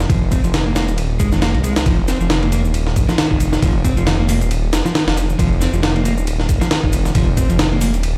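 Played through a big sound system in a bare stone room with light digital reverb, this raw, gritty breakbeat excerpt swings its 16ths as a compressed, thumpy sampler-style drum kit with a high-tuned snare sits up front beside a thick, menacing detuned saw bass, while a slightly broken-up electric guitar riff runs through tube saturation, a low-pass filter and tape echo, and an overdriven electronic shaker hangs in the background.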